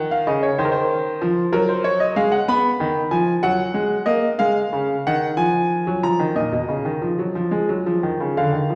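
A clear, open concert grand piano with a deep bass plays alone through this serious, driving baroque-style two-part invention in 12/8 at 62 dotted-quarter beats per minute, spanning Bb2 to B5 and moving from D#m through B and rootless Dbadd9 and Bbsus4 harmonies over 8.8 seconds cut from a longer piece, set in a reverberant recital hall heard from further back in the room.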